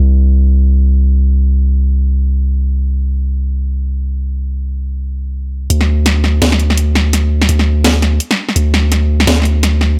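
A long, sustained 808-style bass sits up front from the start, its deep, mellow sine tone striking with a fast attack and then decaying as it moves between C2 and D2. This dark, tense fragment of a longer half-time drum and bass piece runs at 168 BPM in 4/4, with a 59% swing on the sixteenths and tuning set to A4 = 445 Hz. For the first stretch the bass carries the music alone within a digital ambience. At 5.7 seconds a build-up begins as an electronic, layered drum kit enters up front with a cracking snare and bright hi-hats, overdriven and placed in a small room ambience. The drums drop out at 9.9 seconds, while the bass holds on to the close at 10.0 seconds.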